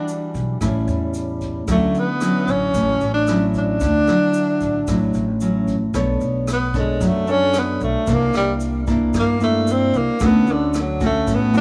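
Sophisticated and sunny, this bossa nova fragment at 113 BPM in straight 4/4 sets a breathy, up-front tenor saxophone with subtone, vibrato and scooped notes over dark, fingerpicked nylon-string guitar with audible finger squeak, a woody, growly pizzicato upright bass, a distant, roomy vintage brush kit with a punchy kick, hi-hat and rim click, and a grainy tube shaker tucked in the background, moving from D major chords like Em9, A7 and Dmaj9 into a B minor passage from 5.9 seconds where the saxophone takes a jazz solo over Bm9, C9 and Dmaj7, all in light reverb.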